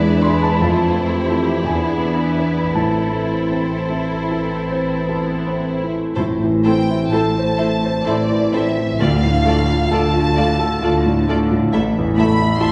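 Classical and brooding in a tragic, rubato triple metre, this excerpt sets a clear, up-front concert grand piano melody against lush, vibrato-rich violin sections carrying the melody and a second line, very quiet violas, background cellos and rich bowed double basses, while dark, soft-attack French horns hold sustained chords until 5.8 seconds and round, softly mallet-struck timpani sound very quietly from 6.2 to 10.3 seconds, all heard from further back in a reverberant scoring stage.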